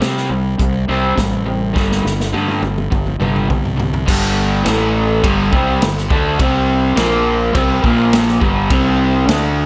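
Brooding and swaggering, this classic rock passage, cut from a longer piece, is led by a raw, double-tracked garage guitar riff sitting up front with picked overdrive and a touch of spring reverb, over a fuzzed, fingered electric bass. A vintage acoustic drum kit with a punchy kick, medium-tuned snare and rolled-off top sounds natural in a small room, and a drum fill from 1.8 to 4.1 s carries the music into its second section. A light reverb gives the mix a little space.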